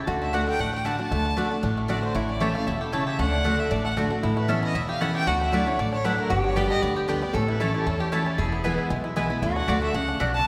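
Up front sits a full-bodied, dreadnought-style acoustic guitar, picked as the accompaniment, driving this virtuosic, joyful bluegrass passage at a brisk straight four-beat pulse. A clear, nasal fiddle carries the melody with light vibrato, close and earthy, while a twangy fingerpicked banjo also plays the melody from further back. A bright, metallic lap resonator guitar plays a slide second line in the background, and a double-strung mandolin adds woody stabs. Underneath, a growly, thumpy upright bass played pizzicato anchors the low end. The harmony moves through D, A, Aadd9, Dadd9, G and E, with a new section arriving at 4.2 seconds, and the whole ensemble rings in the reverberant space of a church or concert hall across this roughly 10.5-second excerpt.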